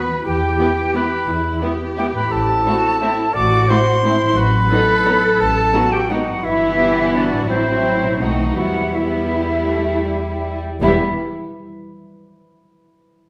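Sweeping and dark, this orchestral ballroom waltz in 3/4 moves with a rubato feel and slows between 8.0 and 10.8 seconds as it draws toward a new section. A silver concert flute carries a pure, tongued second line up front with vibrato, while a clarinet adds a warm, solo-voiced counterline beneath it. Behind them, a concert harp rings out bright, thumb-plucked arpeggios, and muted cello and double bass sections anchor the bass with close, veiled tone. From 0.6 seconds, muted violin sections take up a narrow, con sordino melody and a distant second line in the background, joined by a softly bowed viola accompaniment and a tight, very quiet French horn section holding sustained chords. The harmony turns from E minor through A minor and a B7 to a B7b9 before settling back on E minor, all bathed in the reverb of a wet stone room, in this excerpt cut from a longer piece.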